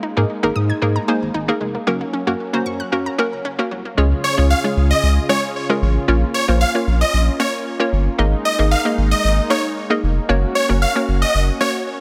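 A huge, lush supersaw melody arrives up front at 4.2 seconds, bright and detuned with a delay trailing behind it, carrying the drop of this summery, euphoric pop track in Db major. Before that, a short build-up opens the clip, where a punchy, wave-folded unison pluck plays delayed arpeggios that end at 3.9 seconds. Underneath, a hollow, bouncy square-wave pluck with a chorus effect plays accompaniment throughout, while a smooth analog pad with its own chorus holds sustained chords. A deep, round sub bass sits up front with a warm sine tone. The tempo is a straight 114 BPM in 4/4, and the mix has a light reverb. The chords move from Absus2 and Gb into Db and Bbm once the drop lands at 4.0 seconds, and the clip is cut from a longer piece.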